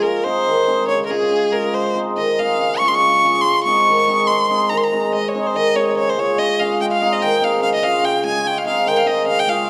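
A bowed violin and a hammered cimbalom start together in this wild, virtuosic Balkan folk fragment in Ab major, cut from a longer piece. The 2/4 pulse sits around 143 BPM with a swung sixteenth-note feel, and the tempo keeps speeding up across the whole 9.7 seconds. A single violinist, close and up front, carries the melody with a clear, focused tone and vibrato, taking a solo through the first 5.1 seconds before the music moves into a new section. Underneath, the acoustic cimbalom accompanies in its lower register, its shimmering, ringing strings also placed up front, while the harmony rocks between Ab and Db. A wet recital-hall reverb and a dark, warm production give the pair a glowing sense of space.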